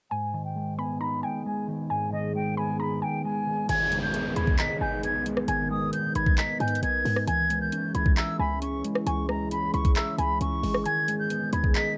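Melancholic and dark, this trap-flavoured hip hop fragment moves in a half-time feel at 134 BPM in G# harmonic minor, sounding like a home recording on cassette with light reverb. An airy, expressive concert flute carries the melody with vibrato and tongued notes, heard through a low-pass filter and analog delay, while a soft, round pluck traces a gentle second line alongside it with chorus and tape colour. A clean, fingered electric guitar supplies dark accompaniment with spring reverb, and from 1.3 seconds a deep, moody pad of detuned sawtooth voices and a sub octave fills in sustained chords with a slow attack and long release. The opening passage carries a filter sweep, and at 3.7 seconds the trap drum kit arrives up front with a knocking kick, metallic hats, handclaps and rim clicks, joined by a punchy, tight 808-style bass and a brief electronic downlifter. The chords shift from G#m to C#m and back to G#m, with the kick briefly muted near the end before the fragment cuts off.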